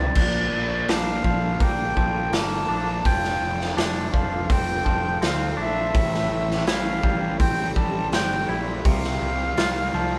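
Psychedelic rock at 83 BPM in a hypnotic, trippy mood, this short excerpt cut from a longer piece has an airy, vibrato-laden flute carrying the melody over a twangy, clean guitar riff pulsing with harmonic tremolo, a fuzzy overdriven picked bass, very quiet phased sawtooth string-machine cellos holding sustained chords, and a gritty, punchy garage drum kit that opens with a fill and sits up front in a pumping stone room, all moving through Bbmaj7, F6, Am7 and C7sus4 as a band playing live together.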